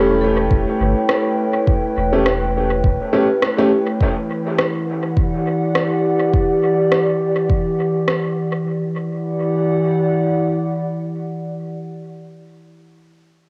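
A swung 4/4 groove at 103 BPM carries this meditative, spacious ambient dub in E dorian, with a deep, up-front electronic kick entering at 0.5 s and a rim click re-recorded in a large room, over chords moving from A7 to Em7. A warbling, nostalgic pad of detuned, dark square and sawtooth tones with chorus and 12-bit sampler grit sustains chords throughout. A round sub bass, a clear, woody upright piano stabbing with dub echo, and a metallic vibraphone ringing arpeggios in the background each fall away by 4.0 s, all heard through a home cassette recording with light reverb.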